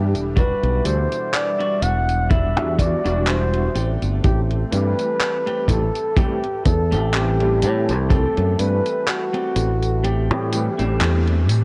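Vaporwave with a woozy, melancholic mood and a lazy swung lilt, this short slice of a longer piece drifts over an Em9 that gives way to Am7. A breathy, dark flugelhorn carries the melody with vibrato, scooped notes and a whispered, intimate jazz tone, trailed by tape echo. Beneath it an electric grand piano with a clangy low end and gritty vintage sampler character adds chorus-thickened, echoing accompaniment, while a faint, detuned tape-like pad warbles in the background with nostalgic sustained chords. A growly, punchy fingered bass sits up front beside a muffled, saturated kick, and a gated 80s drum machine supplies handclaps, hi-hat and tambourine. A clean, picked electric guitar riff sits low in the mix, softened by a low-pass filter and subtle chorus. The kick drops out at 10.0 seconds, and the band lands an accent at 11.0 seconds, all wrapped in a hazy cassette sound.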